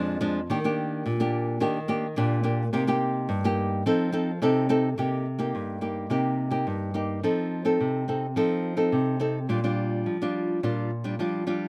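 A fingerpicked nylon-string guitar opens at once and carries this short samba excerpt by itself from 0.0 to 11.7 seconds, its tone acoustic, small and warm and set up front. The mood is bittersweet and yearning, moving at 106 BPM in a straight 4/4 feel. The harmony begins on Ebmaj7, then moves through Cm7 and F7 before a new section arrives at 5.0 seconds, where Cm7 and F7 return and the passage settles on Bb6. The guitar ranges from F2 up to A4, spanning low bass notes and the upper middle register. Recorded outdoors, the sound is dry and close, with little reverb and an absence of room ambience.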